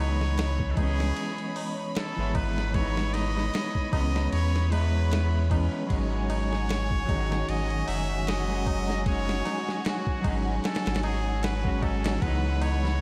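A nasal, straight-muted trumpet carries a brooding melody with light vibrato and tape echo through this smoky 76 BPM trip hop passage in C# minor, cut from a longer piece, over a round, up-front sine sub bass, a dark, fingered clean electric guitar with harmonic tremolo, smooth bowed violin chords, and, from 0.2 s, a gritty, pitched-down boom bap kit with a thumpy kick plus a high-tuned tabla in the background, all steeped in dreamy cathedral reverb as the harmony moves from C#m9 to G#7sus4 and back.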